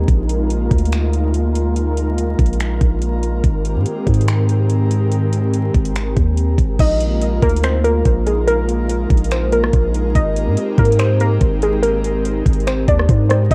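Wrapped in cassette tape and vinyl crackle, this dreamy, blissful cloud-rap excerpt floats on a breathy, detuned pad pumping under sidechain, a deep sine 808 bass and an up-front electronic R&B drum kit of knocking kick, metallic hi-hats, finger snaps and rim clicks, until a warbling, dusty pluck dipped in tape echo takes the melody at 6.8 seconds.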